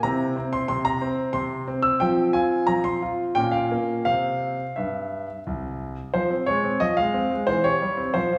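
A clear, intimate grand piano plays alone from the start, its action noise audible, in a restless, serious classical-period sonatina in F minor, moving at 89 BPM in a rubato 3/4 over a range from C2 to E6, with harmony shifting through C, B-flat minor and F minor into a new section at 6.1 seconds, all set in a reverberant recital hall heard from further back, as a brief cut from a longer piece ending at 8.4 seconds.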